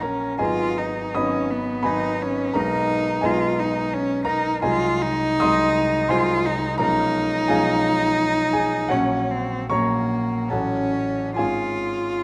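A gently flexible pulse in 3/4, moving with rubato somewhere between 65 and 90 BPM, carries this serene, tender romantic duo for cello and grand piano, cut from a longer piece. A single bowed cello sings the melody up front and close, its tone rich, smooth and even, colored by vibrato within a compact range from Bb3 to F4. Alongside it, a clear concert grand piano supplies the accompaniment across a broad span from G#1 to D#6, its sound intimate and natural with deep bass and audible action noise. Both instruments play throughout the 12.2 seconds, with the harmony drifting from G#m7 toward Db major, which settles in from 4.6 s through chords such as Ab7/C, Gb/Bb and Gbm/A before resting on Db/Ab at 11.4 s. A moderate large studio reverb lends the pair a sense of space around them.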